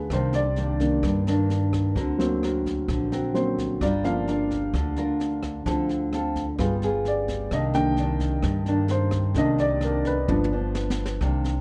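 A baby grand piano with short, natural sustain takes the solo from the opening moment over a dark, thumb-plucked nylon-string guitar sitting up front, a woody, growly pizzicato upright bass and a smooth brushed drum kit with a boomy kick and high-tuned snare, in an intimate, melancholic bossa nova at 130 BPM in C minor that moves through Cm9, Gm7 and G7b9 harmonies in light reverb before a drum fill at 10.3 seconds closes this fragment of a longer piece.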